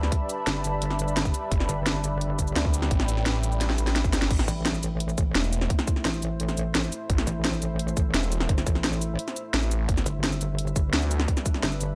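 A straight 4/4 pulse at 172 BPM drives this dark, aggressive excerpt of technical drum and bass in A minor, cut from a longer piece and sitting in a drop from the first moment. A tight electronic kick and a layered, overdriven kit with a cracking snare, bright hats, shaker and crash sit up front with a small-room character, and a drum fill arrives at 3.6 seconds. Two basses carry the weight: a swirling, thick detuned saw bass treated with phaser, and a metallic, wobbling FM bass that is distorted, compressed and chorused, entering at 0.5 seconds. Behind them, a deep, moody ambient pad holds sustained chords with slow attack, chorus and its own reverb, pumping against the sidechain, while an airy, breathy, slightly nasal pad with a noise layer adds chorused texture up high until 4.3 seconds. The harmony moves from G6 to A minor and back to G6, all wrapped in light digital ambience.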